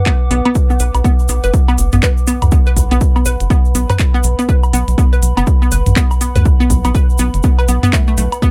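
Clinical and hypnotic, this short cut from a longer minimal techno track rides a swung 4/4 groove over a single B minor chord. A punchy, layered electronic kick sits up front from 0.1 seconds, alongside a tape-warm minimal click kit with clicky hi-hats and handclaps. A rubbery, resonant square bass enters at 0.3 seconds, dark and bouncy with a filter pluck and moving notch, pumping against the kick. A hollow, detuned square pluck carries the riff with a bright edge, a sub octave and noise layer, ensemble chorus, dub echo and sidechain pumping. Dry analog-style electronic woodblock and toms add percussion, while a grainy cabasa sits in the background. Beneath it all, a warbling, lo-fi pad with a slow attack and long release adds a nostalgic, chorused haze, and light reverb ties the mix together.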